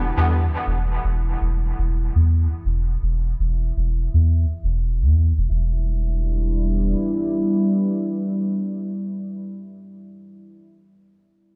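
Heard through a big sound system in a bare stone room with light digital ambience, this nocturnal, cavernous dub techno fragment in E minor at 121 BPM rests on a single Em7 chord, where a round, soft sub bass sits up front until 6.9 seconds and a dark, detuned sawtooth pad with chorus and a slow attack holds sustained chords through 9.3 seconds, both moving through filter sweeps over the first 5.5 seconds.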